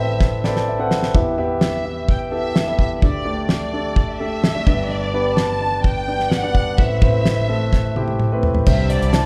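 A lush, bowed violin section carries an earnest, dramatic melody over an up-front concert grand piano with a deep bass, as a damped acoustic drum kit enters at 0.2 s with a fill alongside a piano fill, its fat snare, tight kick and dark cymbals sounding dry yet polished. This piano-driven pop passage moves through chords such as Amadd9, Em, Dsus4 and G, with the drums adding another fill near its end, all set in the warm reverberation of a church or concert hall. At 8.7 s, a round, punchy fingered electric bass and a veiled, distant, very quiet muted string section join on a Cadd9 chord just before the clip cuts off.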